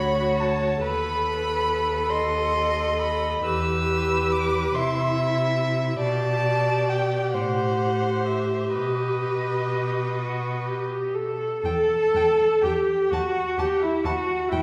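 Yearning and melancholic, this slow romantic movement for string quartet unfolds in a rubato 6/8 at roughly 40-50 beats per minute, tuned slightly low to A4 = 438 Hz. A warm first violin carries the melody high above, bowed with vibrato and expressive portamento yet sounding distant, while a second violin traces a smooth, even line beneath it. The viola sits up front in the balance, its soft attacks, vibrato and sliding portamento giving the accompaniment an expressive, rich voice, and a close, steady cello anchors the bass. The harmony moves from D through B7/D# and E minor toward A minor 7 and B before the texture shifts into a new section at 11.6 seconds, where the chords drop away and then settle on D# minor. A wet recital hall reverb heard from further back in the room bathes the quartet in a lingering glow, and the passage is cut from a longer piece.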